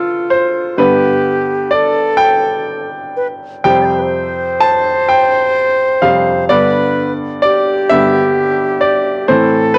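A polished, woody upright piano carries this Celtic slow air, its short-sustained chords sitting up front as it moves from D minor through G and F sus2 before settling on A minor near 9.3 seconds. An airy, close-miked wooden flute with a straight, tongued tone adds an expressive second line over the piano's free, rubato 6/8 pulse at 42 dotted-quarter beats per minute. The longing, mournful mood comes through a light reverb and the soft grain of a cassette home recording, cut from a longer piece.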